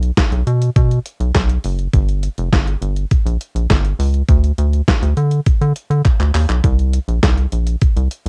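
A straight 4/4 groove drives this funky, slick slice of early-eighties boogie funk cut from a longer piece, where a detuned, sampler-style 8-bit drum machine with a thumpy kick, medium-tuned snare, handclaps and hi-hat sits up front beside a rubbery, nasal square-wave bass with a plucky filter and fast attack, both playing throughout a dry home cassette recording, with a short drum fill at 6.1 seconds.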